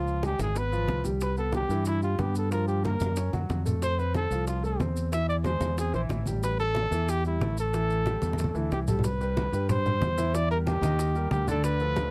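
A mellow, vibrato-laced trumpet carries the solo melody up front in this fiery, sultry Afro-Cuban jazz excerpt at 184 BPM. It moves from A minor into C major at 9.0 seconds. A bright, direct fingered electric bass sits equally forward beneath a warm, intimate vintage grand piano with audible action noise and long sustain, while damped, low-tuned congas and round bongos fill the background and grainy maracas sound close and dry, with drum fills at 3.3 and 8.2 seconds in a lightly reverberant, closely miked sound.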